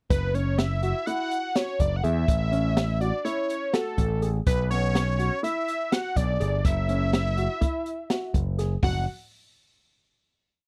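Driving and tense, this short progressive instrumental for band moves in a straight 9/8 at 248 BPM counted in eighths, set in F# minor. A fat, sawtooth lead carries the melody in motif-based phrases, its detuned tone thickened by a sub octave, with a filter pluck on a fast attack, sustained notes, vibrato and a phaser. Underneath, an overdriven picked electric bass sounds bright and punchy, direct and amped, locked to the kick drum. The open jazz drum kit plays the 9/8 groove on hi-hat, kick, snare and toms, with a high-tuned snare and a boomy kick, and sits up front with the bass and lead. From 0.3 seconds a dark, mellow baby grand piano repeats an arpeggiated ostinato beneath them as the harmony moves from F#5 through A and Bm back to F#5, before a final note from 8.8 seconds closes the piece. The sound is a dry, close 1970s-style studio recording with light reverb.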